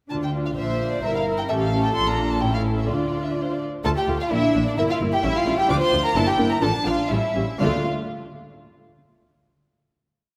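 A quick, stormy classical-period movement for string orchestra in D minor opens with violins, violas, cellos and double basses bowing together: violins carry the melody up front with a soft, floating tone, while a dark, woody viola section plays lush repeated chords with vibrato in the rhythm of the tune. Beneath them, the cellos give a pure, sul tasto bass on the beats, sustaining notes and stepping into counter-melody, and a rich double bass section doubles that line with repeated low notes. At 0.6 seconds a second violin line enters, played close and doubling the tune at the octave as a counter-melody. The restless 2/4 pulse at 128 BPM runs through two statements of the same section before slowing down from 5.2 seconds. A final open D chord arrives at 7.6 seconds and lingers in the concert hall's wet reverb.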